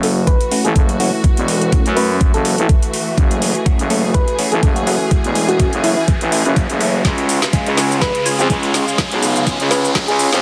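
Bass house at 124 BPM in F# minor, this short build-up excerpt has an aggressive, bouncy feel with a light 16th-note swing. A growling, thick FM bass sits up front with tube saturation and sidechain pumping, alongside a knocking, overdriven electronic kick from 0.3 seconds and a garage kit of woody snare, metallic hats and shaker. A soft, round, keys-like synth lead with chorus, vibrato and delay carries the melody, while a nasal, band-passed chord stab with phaser and delay sits in the background under a filter sweep. A lush symphonic string section holds sustained chords with pumping, and a very quiet, warbling, nostalgic lo-fi pad adds mellow texture. The harmony moves from F#m7 to C# at 7.0 seconds as a drum fill begins, with an electronic riser building from 2.9 seconds in a dense, heavily limited mix with light reverb.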